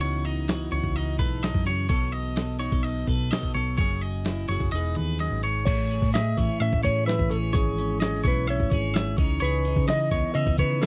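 Twangy twelve-string and arpeggiated electric guitars ring out over a round, dark hollow-body bass and a gritty, compressed sampler-style drum kit with a thumpy kick, setting an intricate, playful math rock and midwest emo groove at 128 BPM in E major through chords like C#m11 and Emaj9, as kick and snare drop out from 4.7 to 5.7 seconds before a mellow, fingered electric guitar melody with phaser and tape echo enters at 5.7 seconds in this dry, close 1970s-style recording cut from a longer piece.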